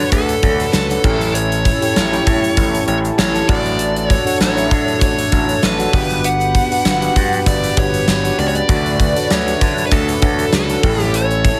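1980s-style pop in D major at 98 BPM, with a light sixteenth-note swing and a glossy, uplifting mood, heard in a short cut from a longer piece. A dark, smooth lead guitar carries the melody up front, its overdriven, picked tone trailed by digital delay. Underneath, a mellow tine electric piano supplies clean accompaniment over a gritty slap bass that sounds punchy and amped with overdrive. Fat, sawtooth analog synth brass with chorus and a filter sweep adds bold stabs from the background. A gated 80s drum kit, entering at 0.1 seconds with tight kick, medium-tuned snare, hi-hat, crash, tambourine and bright cymbals, sits prominently in an airy stone-room sound, while a very quiet, grainy egg shaker adds texture, all within light reverb and small-room ambience as the chords move from Dmaj7 through A7 and Gmaj7 and back.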